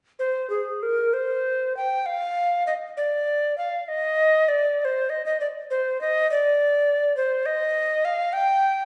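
Introspective and solemn, this brief fragment of a baroque-style classical fantasia in C minor unfolds in a rubato 12/8 at roughly 63-70 dotted-quarter beats per minute, with a tenor recorder playing alone from 0.2 to 8.8 seconds. The recorder's woody, airy tone carries an expressive vibrato and a crisp, chiffy attack as it moves between Ab4 and G5, sitting up front in the sound. A wet recital hall reverb with a 1.5-second decay surrounds it, and the listener seems placed further back in the room, where the upper highs are softened.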